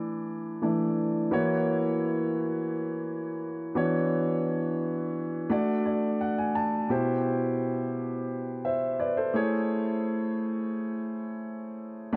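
A concert grand piano plays alone through this glossy, uplifting pop passage cut from a longer piece, its open tone carrying deep bass and long sustain up front, touched by tape echo and set in a lush hall reverb within a dark production. The opening moves over an E bass from Dsus2/E through F#7/E and Bmadd9/E, and a piano fill from 5.5 to 6.9 seconds leads into a second section that settles on Cmaj7 and Amaj7.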